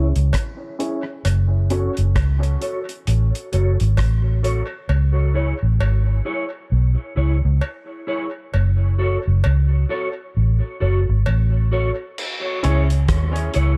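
Dub reggae at a slow 66 BPM in C# minor with a swung sixteenth feel, heavy and deep, moving between C#m and F#m in this short excerpt from a longer piece. A dark, foam-muted fingered electric bass sits up front and round throughout, under a mellow, clean electric guitar carrying the accompaniment through ensemble chorus, low-pass filtering and tape echo, while a woody upright piano with audible action noise adds brief stabs at the start and again near 12.6 seconds. A cloth-damped, thuddy drum kit with dark cymbals and a tight kick plays from 0.2 to 4.7 seconds, drops out, then returns at 12.2 seconds, a compressed, saturated cowbell with tape echo runs beneath, and a filter sweep over the first 12.2 seconds shapes the echo-heavy mix.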